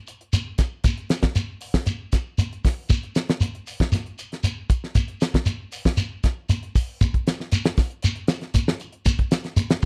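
A dry, close 1970s-style studio sound frames this intense, hypnotic afrobeat excerpt at 117 BPM in a straight 4/4, where an up-front damped 70s drum kit with a fat snare, tight kick, hi-hat and rolled-off top plays throughout alongside a grainy, mellow shekere caught in a live room, with the music moving into a new section at 7.0 seconds.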